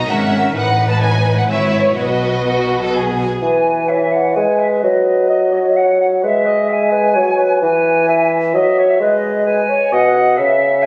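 A quick, lively classical-period movement for symphony orchestra in E major and 3/4 at 129 BPM, this graceful excerpt opens with strings alone: a rich, focused first violin section carries the melody up front, a clear, intense second violin line and a smooth-topped viola section fill the middle, and rich, even cellos and double basses hold the bass, all bowed with vibrato. At 3.4 s the strings give way to woodwinds, with a pure, crisp-attacked flute section and a solo clarinet sharing the second line above a mellow, up-front bassoon in light vibrato. The sound sits in a wet scoring-stage reverb, heard as if captured on a phone in a club-like room.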